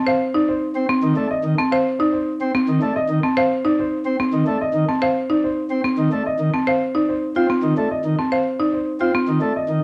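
A dark, roomy studio sound with a moderate reverb frames this propulsive, bright fragment of minimalist classical pattern music in three-time, cut from a longer piece and resting on a rootless F7. A buzzing marimba struck with hard mallets sits up front, spinning woody, percussive arpeggios from the start, while a mellow, boxy grand piano carries a softer melody above it. From 0.8 seconds a chamber organ's principal chorus joins with a full, chiff-edged accompaniment that sits close and present.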